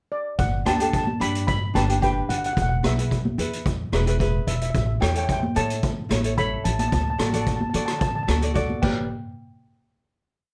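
A steel pan opens alone with a short pickup, its mellow, shimmering tone played with soft rubber sticks as it carries a motif-based melody through a carefree, sunny calypso in G major at 110 BPM. At 0.4 seconds a woody, thumpy pizzicato upright bass enters with a syncopated figure alongside a boomy, rolled-off street-band drum kit playing a calypso groove with kick, hi-hat, rim click and crash. Bright fingerpicked ukulele triads follow from 0.7 seconds, joined by ringing, high-tuned congas in the background. The verse moves through G, E, A and D in a dark production with moderate studio reverb, ending on a final hit at 9.1 seconds.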